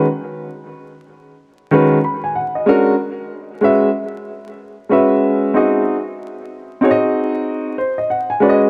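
Hip hop at 94 BPM in 4/4 with a swung sixteenth-note feel, this short cut from a longer piece carries a cool, nocturnal mood. A warm, natural grand piano plays alone and up front from 0.0 to 8.7 seconds, ranging from D#3 to B5 over chords moving from G#m7 through A#7alt, F#5 and E69 to G#7. The sound is steeped in worn, warbling old tape and cassette character, with vinyl crackle, warbly pitch drift and a moderate plate reverb with a 2.7-second decay.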